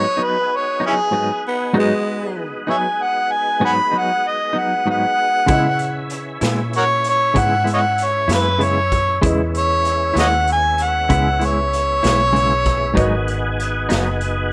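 A slow 12/8 blues pulse at 64 BPM in G# minor carries this mournful, brooding passage, where a mellow, overdriven harmonica with light vibrato, tongue slaps and scooped notes sings the melody up front over a dark, woody upright piano in the background, a clean, compressed semi-hollow electric guitar with tremolo, and a smooth tonewheel organ holding chords through chorus vibrato and a slow rotary speaker, while a raspy, growling tenor saxophone cuts in briefly at 1.5 seconds and a round, foam-muted electric bass and a gritty, boomy garage drum kit in a pumping small room join at 5.5 seconds as the harmony moves from G#m7 to C#m7, captured in a rough home-demo mix with light reverb.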